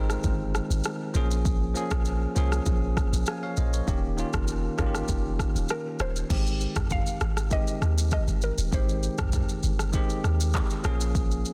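A deep, boomy 808-style bass with a clean sine tone anchors this joyful, breezy afrobeats piece in Ab major at 99 BPM, moving through Abmaj7, Bbm7 and Eb7. An electronic afro-pop kit sits up front with a deep kick, handclaps, rim clicks, shaker, toms and crash, its snare softly clipped, while a bell-like tine electric piano adds bright, direct chords throughout. At 5.7 s a woody, round synth pluck carries a short mallet-like melody coloured by chorus, phaser and tape echo, and the mix sits in light reverb under a dense, heavily limited master.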